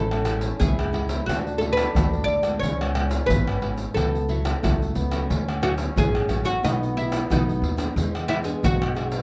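A plectrum-plucked, fretless oud with doubled strings carries the melody in this joyful, playful samba-choro excerpt at 90 BPM in 4/4, over a distant jazz-style trombone line with vibrato, a fingerpicked classical nylon-string guitar in the background, a woody pizzicato upright bass, and tube shaker, pandeiro, tamborim and a deep surdo, all set in light reverb with a dark, warm production as the chords move from Amaj7 through Dmaj7, C#7 and B7 to E7.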